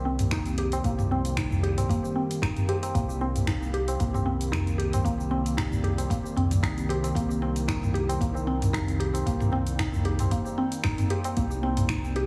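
Mystical and earthy, this organic downtempo excerpt moves at 114 BPM in 4/4 with a light 16th-note swing, sitting in C minor pentatonic over a single Cm7 chord. A warbling, nostalgic tape-like pad holds dark, detuned chords underneath, its chorus and built-in reverb breathing with sidechain pumping. Above it a woody, mellow mallet-like synth pluck spins arpeggios through subtle chorus and digital delay, with a filter sweep running across the whole 12.3 seconds. A round analog bass anchors everything on a deep, evolving C2 warmed by tube saturation. From about 0.2 seconds an up-front afro-pop kit of cabasa, finger snaps, metallic hi-hat and toms enters, joined at 0.3 seconds by an overdriven electronic kick, both set in studio reverb, while a low-tuned, ringing tabla sits close and dry beside them. The whole mix carries an echo-chamber tail and a heavily compressed, radio-like sheen with small room ambience.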